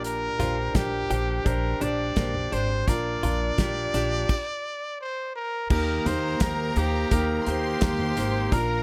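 Hopeful and warm in mood, this short piano-driven pop passage, cut from a longer piece, moves in a straight, steady four. A bright, punchy trumpet carries the melody up front with vibrato, over a clear, intimate grand piano whose action noise and long sustain can be heard. Woody, thumpy pizzicato upright bass and a natural small-room drum kit, with dark cymbals, a tight kick, snare, hi-hat and toms, anchor the groove. A clean, compressed electric guitar riff sits in the background until 4.3 seconds, when the music breaks for a stop. At 5.7 seconds, as the harmony moves from Gm/Bb and Bb to Eb, a lush, smooth bowed violin section adds a second line, and very quiet, crisp group handclaps join at 6.4 seconds, all within light reverb and a small-room ambience.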